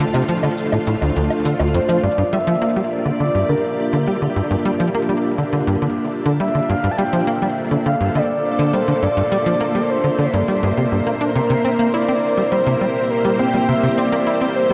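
Ambient, sequencer-driven space music in G dorian at 103 BPM, this cosmic, expansive piece is cut from a longer work and moves from Dm7 to Gm7 at 2.0 seconds and on to C7, while a punchy, nasal sawtooth sequencer bass riff drives up front beneath lush, vintage string-machine chords thickened by ensemble chorus. A dry analog shaker and woodblock tick with delay only until 2.0 seconds, and a breathy, flute-like synth lead enters at 1.7 seconds carrying the melody with chorus, tremolo and vibrato. A faint twinkling granular texture shimmers an octave up in the background, and the whole mix sits in a huge, wet reverb with the worn, warbly pitch drift of old cassette tape.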